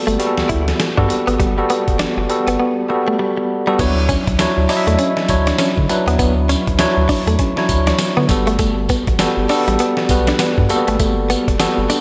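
A lush, wet hall reverb gives this short cut from a longer piece a big arena sound. It is a flirty, upbeat new jack swing groove in R&B style, with a swung sixteenth-note feel. A bright, bell-like tine electric piano sits up front with slapback echo, voicing lush chords that move from Gmaj9 to Dmaj9 at 3.8 seconds and back to Gmaj9 at 8.3 seconds. A clean, picked electric guitar, recorded direct and compressed, plays a riff coated in analog chorus and slapback echo. Beneath it, a round, deep analog bass with a dark, sustained tone and a filter sweep anchors the low end. The gritty, pitched-down sampler-style boom bap kit is placed up front, pairing a thumpy kick and medium-tuned snare with hi-hat, tambourine and crash cymbal.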